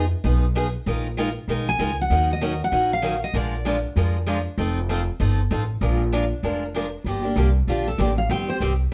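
Swinging and virtuosic, this short excerpt of acoustic string swing in the jazz manouche style moves at a brisk 194 BPM in 4/4, with a 58% swing on the eighth notes and tuning set slightly low at A4 = 438 Hz. A picked dreadnought steel-string guitar carries the accompaniment throughout, its tone warm and up front, while a pizzicato upright bass with gut strings supplies a woody, dark, thumpy foundation from the first moment. A second picked guitar, a parlour instrument with fresh strings and a bright, boxy voice, states the melody from 1.7 to 3.7 seconds and returns at 7.7 seconds as part of a solo that opens the next section at 7.1 seconds. The harmony travels from Fm7b5 through Bb7sus4, Ebm7, Bb7, F7 and back to Bb7 before settling toward Gm7 and Eb6 near the close. The trio sounds like a band playing live in one room, framed by moderate studio reverb that keeps the parts close and present.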